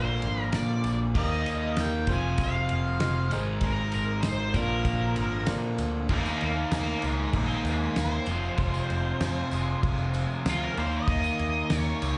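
Classic rock at 97 BPM, gritty and driving, cut from a longer piece heard as a live club gig through the PA, where a dark, fuzzy octave-fuzz lead guitar with wah and slapback echo carries the melody and takes a solo from 6.1 s over crunchy and raw garage guitar riffs, a growly, punchy picked electric bass up front, a damped 70s drum kit with a fat snare and dark cymbals, a jingly tambourine far in the background, and a woody upright piano heard only from 1.2 to 6.0 s, all moving through chords of Bb, Eb, Fm and Ab.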